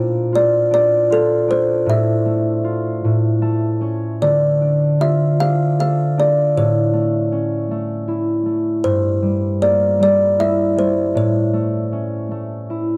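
The recording has a dry, close sound in a 1970s studio style, with light reverb and both instruments placed up front. This wistful, gentle children's lullaby, cut from a longer piece, moves in a rubato 6/8 at about 52 beats per minute counted in dotted quarters. A woody, hollow-toned kalimba carries the thumb-plucked melody in a narrow range. A bright concert harp, also plucked with the thumb, supplies the accompaniment across a much broader span, and both instruments ring out. The harp adds a short fill from 3.0 to 4.2 seconds. The harmony drifts from Bbadd9 through Fmaj7/A to A and Dm, later touching Edim/G before settling back on A.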